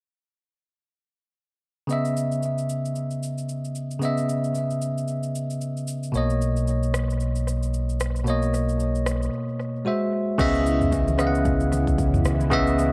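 Amapiano at 113 BPM in C# dorian, this short excerpt from a longer piece feels deep and hypnotic, with a swung sixteenth-note lilt and a light, echo-heavy mix carrying a cassette-tape character. A bell-like, clean tine electric piano sits up front from 1.9 seconds, its chords passing from C#m9 to Bmaj9 and through G#7b13 back to C#m9, with analog delay trailing its notes. The electronic afro-pop drum kit enters alongside it, pairing a deep kick with rim clicks, shaker, toms and crash, all with a tape-softened edge and its own analog delay. A full, sine-based sub bass with an octave arrives at 6.1 seconds, sustaining low notes with a fast attack, and after a brief break the closing section at 10.4 seconds brings in a detuned sawtooth pad in the background, chorused and pumping, alongside very quiet, low-tuned congas played with soft hands in a live room.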